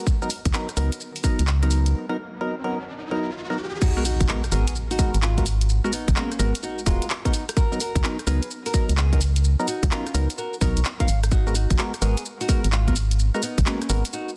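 A swung two-step garage groove at 128 BPM in G# dorian sets a moody, late-night tone: a tight, up-front electronic kick and a tape-tinged garage kit of hi-hat, shaker, rim click, handclaps and crash drive the beat, while a hollow, organ-like FM bass pumps underneath and mellow, wave-folded organ stabs sit in chorus, phaser and delay. During a short break, a riser builds from 2.2 seconds and lands on an impact as the drop arrives at 3.8 seconds. From there, a small, dark, fingerpicked nylon-string guitar carries the melody with 12-bit sampler grit and delay over chords moving between C#13sus4 and G#m9, in a dense, heavily limited mix with very little reverb.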